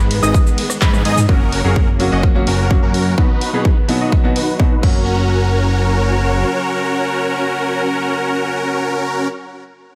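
This excerpt of euphoric, triumphant festival progressive house opens on a drop, with a fat, saturated analog bass, a huge detuned supersaw riff and lush background strings all pumping against a punchy, overdriven electronic kick, while a big-room drum kit of claps, hi-hats, cymbals, rim clicks, cabasa and toms adds a fill and a band accent at 0.8 seconds. A catchy plucked unison lead flickers in the background with delay, and then at 1.3 seconds a clear, vintage grand piano enters as the supersaw's low-pass filter sweeps. The drums stop at 4.9 seconds and the bass holds on until 6.4 seconds, while the piano, supersaw and strings carry the harmony onward in a light reverb, the progression having moved from G#m through F# and B back to F#.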